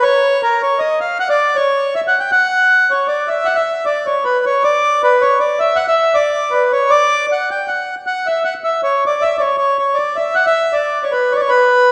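A 3/4 waltz at 157 BPM, played straight, drives this short musette fragment, cut from a longer piece, in B harmonic minor with tuning at A4 = 441 Hz. A single accordion carries the whole 11.9 seconds alone, staying between A#4 and G5. Its reedy, dark tone is full and smooth, with a dry tuning that keeps the reeds pure, and it sits up front in the mix. A wet recital hall reverb with a 1.6-second tail surrounds the playing, and the recording is heard from further back in the room. The mood is whirling and nostalgic, like a memory of a dance floor spinning in minor light.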